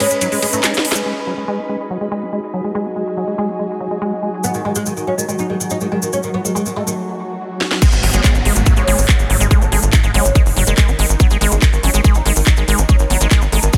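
This excerpt of hypnotic, alien psychedelic trance in G# minor at 142 BPM opens on a short break, with a squelchy, resonant acid bass riff, a swarming, detuned drone and a deep, moody pad already sounding alongside brief hits from a drum kit with a cracking snare and crisp hats, a grainy cabasa, and a woody, fretless oud plucked with a plectrum. After a drum fill and a band accent, the middle stretch pares back to the drone under a filter sweep, the pad, the acid bass, and from 4.4 seconds the returning oud melody, soaked in phaser and dub echo, with the cabasa beside it. At 7.8 seconds the drop lands: a tight, up-front electronic kick and a punchy, nasal sequencer bass drive the groove, the drum kit returns with handclaps, ride and crash, and a downlifter sits in the background. Sidechain pumping breathes through the oud, drone, pad and acid bass, giving the sustained layers a rhythmic pulse. 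The mix carries light digital ambience and a dense, heavily limited modern master.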